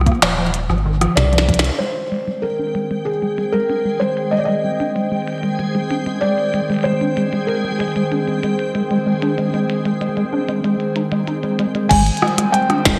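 A felt-muted upright piano carries the melody in this playful, wistful IDM piece, its intimate, thick-felt tone full of audible action noise and trailed by delay. Beneath it, a rubbery acid bass plays resonant, filter-plucked arpeggios with ensemble chorus and delay, and a filter sweep runs across it through the long middle stretch. A hollow, flute-like pad holds sustained chords with 12-bit sampler grit and sidechain pumping, while a reversed, granular swelling texture drifts quietly in the background until 11.9 seconds. The glitchy drum kit sits up front with a tiny snare, clicky hats, rim clicks and crash cymbal, all low-pass filtered and wrapped in gated reverb. A deep electronic kick and a round, nasal analog bass appear only in the opening moments, where a drum fill and band accent lead into the middle stretch at 1.8 seconds, and again at 11.9 seconds. The production is bright and 1980s-styled, set in a wet plate reverb.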